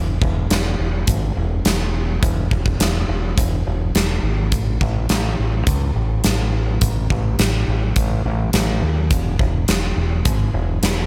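Classic rock with a driving, sunny mood, moving at 105 BPM in a straight 4/4 feel in E major, tuned slightly below standard pitch. A growling fingered electric bass carries the low end from the start, its overdriven, amped tone sitting up front and staying in a low register between E1 and D#2. At 0.2 seconds a huge arena drum kit joins with hi-hat, a punchy kick and a medium-tuned snare, its acoustic sound placed close and forward with a hall character. The two parts sit at an even level, giving a lean, muscular arrangement. The overall sound is dry, with little reverb, and this short clip is cut from a longer piece, ending at 11.1 seconds.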